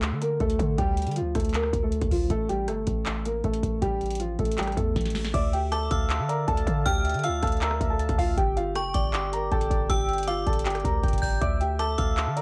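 A dark, boxy grand piano carries the melody over a punchy, heavy 808-style bass and a booming analog drum machine with a deep kick, crisp snare, claps, rim clicks, crash and metallic hats, setting an eerie, hard-hitting trap groove in D minor at 158 BPM with a half-time feel. After a drum fill ending at 5.3 seconds, soft, round electric-piano-like synth keys with chorus and a filter sweep join in the background, and at 5.7 seconds a bright, inharmonic FM bell adds a high, ringing second line. The dry home-cassette sound gives the piano, drums, keys and bell a tape-worn character, cut from a longer piece.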